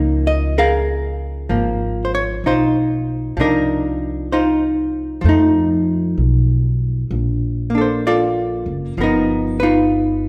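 A clean, dark hollow-body archtop guitar, miked and amplified, and a woody, growly pizzicato upright bass on steel strings open together up front in this tender, romantic swung jazz ballad excerpt, the picked guitar voicing lush chords from Db69 through Cm11, F7 and Bbmaj9 to a tense G7alt at 9.0 seconds over the bass's thumpy, bright support, all bathed in a wet recital-hall reverb.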